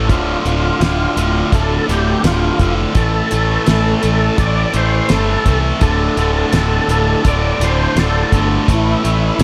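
An overdriven tonewheel organ carries the melody in this gritty, brooding classic rock clip, its thick tone coloured by key click, chorus vibrato, a slow rotary speaker, slapback echo and digital delay. Beneath it, two bright, picked electric guitars play a riff from the opening moment, one distorted and the other compressed and given a slapback echo. A round, dark fingered bass with fuzz and overdrive sits up front, while a damped 70s drum kit with a fat snare, tight kick, hi-hat and rolled-off top keeps a straight 4/4 at 84 BPM. The harmony moves through Dm, Am, D5 and A5 in D minor across roughly 9.4 seconds cut from a longer piece. A moderate, lush hall reverb gives the mix a big arena sound.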